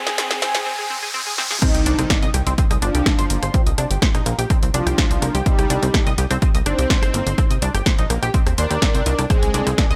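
Set in a light, digital-sounding reverb, this cinematic, driving melodic techno excerpt in C minor at 125 BPM opens with a build-up: a round, brassy synth melody with chorus and dub echo, a tight, detuned sequenced synth arpeggio treated with phaser, an electronic riser and a drum fill on a punchy, tape-toned analog drum machine. At 1.6 seconds the drop lands with an impact, and an up-front electronic kick drum and a smooth supersaw second line in the background come in, joined a moment later by a funky, plucky analog bass with tube saturation. The synths and bass pump against the kick as the chords move from Cm to Ab near the end.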